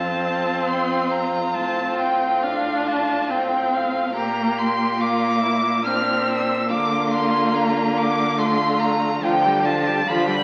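A rich, focused first violin carries the melody high in its register, its vibrato singing from a slightly distant place while still sitting up front in the balance. This is a slow, tender romantic movement for string quartet in 3/4, shaped with supple rubato and played by one bowed player on each part. Beneath it, a clear second violin holds an even inner line close by, while the viola adds expressive accompaniment full of vibrato and portamento, also placed up front. The cello anchors the bass with a smooth-topped, steady tone and vibrato as the harmony moves from F and F/A through Bb and Bb/D to a G7/D at 9.2 seconds. A recital hall reverb surrounds the quartet, and the crackle of a very old 78 rpm record gives this 10.4-second excerpt, cut from a longer piece, an aged glow.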